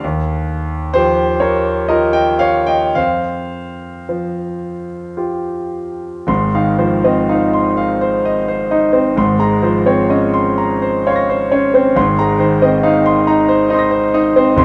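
A clear concert grand piano opens alone on an Eb9 chord, its long sustain blooming into a moderate recital hall reverb. This is impressionist classical solo piano in triple metre, played with a free, rubato feel that gives the music a dreamy, luminous mood. The harmony drifts through Fsus2 before moving at 6.3 seconds into a new section built on Ab6, Bbm9/Ab and Abadd9. Sitting up front, the instrument spans from a deep bass at F1 up to Bb6 with a natural tone. The overall production is dark, and the passage ends at 14.6 seconds as a fragment cut from a longer piece.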